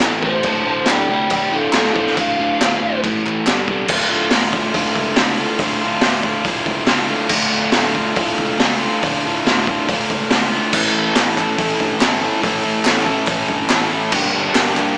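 A crunchy, double-tracked overdriven guitar riff sits up front in this swaggering, menacing garage rock excerpt, with a dark fuzz lead guitar tearing through a brief solo at the opening, between 0.2 and 3.0 seconds. A gritty, saturated drum kit with a punchy kick and crash cymbal drives the groove, while a growly fingered bass rumbles in the background. Hollow group handclaps appear at the start and return at 11.2 seconds, all set in moderate studio reverb with a small-speaker character.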